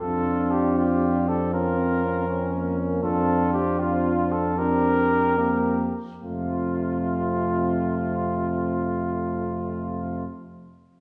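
Classical brass quintet music in a steady 6/8, noble and stately, with a mellow lead trumpet carrying the melody up front, touched by light vibrato, while a second trumpet plays a supporting line in the background. A warm French horn fills in the accompaniment, a very quiet euphonium adds soft-attacked harmony with gentle vibrato, and a clear, forward tuba anchors the bass on a single low note. Heard from further back in a reverberant recital hall, this passage from a longer piece slows between 2.3 and 6.2 seconds before a new section begins.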